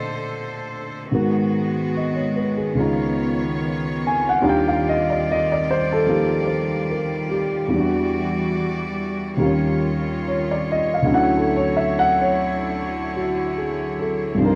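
Intimate and late-night in mood, this jazz ballad moves at a slow 72 BPM in 4/4 with a gentle swing on the eighth notes. A warm grand piano sits up front as the accompaniment, reaching from the low register up into its upper range across the whole 14.6 seconds. Behind it, a chamber cello section holds sustained bowed chords, its tone clear and earthy with a light vibrato, placed at a distance and kept softer than the piano. The harmony drifts through rich extended chords, opening on Bbmaj9 and passing through Abm7, Db9 and Ebmaj9 before sliding via Em9 and Eb9 to arrive at Dmaj9. A wet club reverb wraps the sound in a short, clubby ambience, and the passage is cut from a longer piece.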